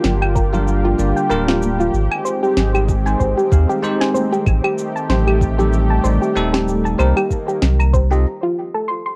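Smooth and relaxed, this sunset chillout excerpt sits at 95 BPM in 4/4 with a gentle 16th-note swing, built on a lush, warbling unison pad with chorus and plate reverb, dark, round pluck arpeggios echoing through analog delay, and a deep, sine-like sub bass held up front with tube saturation. Electronic drums, a soft kick entering at 0.4 seconds and a sharp snare with shaker and claves, carry a tape-softened small-room character, while very quiet, band-limited congas add vintage texture and a bell-like tine electric piano chimes in at 0.5 seconds through a low-pass filter and delay. The chords move from Gm7 through Abmaj7, Am7b5 and Cm7 before a brief break on F at 8.3 seconds, where the pluck rings on alone until 9.2 seconds, all wrapped in the soft, lightly reverberant feel of a home cassette recording.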